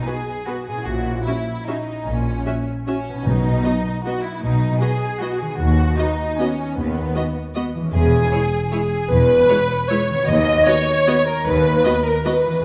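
Bathed in a wet scoring-stage reverb, this elegant, festive excerpt of an orchestral ballroom waltz in B major moves at 153 BPM in a rubato 3/4, with a lush, muted symphonic violin section up front carrying a second line over dark, sustained French horn chords and mellow, ringing thumb-plucked concert harp arpeggios, while a veiled chamber violin section sings the melody in the background, con sordino violas add soft-attack accompaniment, muted cellos and double basses enter on the bass at 0.9 seconds, and hard-mallet timpani sound an articulate B at 3.3 seconds.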